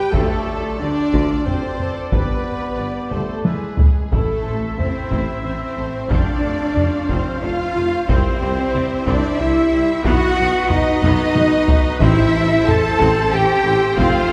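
Dark and dramatic, this epic orchestral film-score excerpt moves at 91 BPM in 3/4 in D dorian, with close, dry taiko drums hit with heavy sticks driving beneath a mellow French horn section holding sustained chords over a bass of mellow tuba, rich distant double basses and expressive, soft-attack cellos. In the background, a dark, lush violin section carries the melody with a second violin section as a second line, lush violas accompany, a distant, roomy woodwind section holds chords, and very quiet timpani struck with hard mallets sound only at the start and again at 12.0 s. An airy, hollow flute section joins at 4.1 s as the harmony turns to Am, the whole ensemble heard from further back in a wet scoring-stage reverb, with drum fills at 3.1 s and 11.0 s.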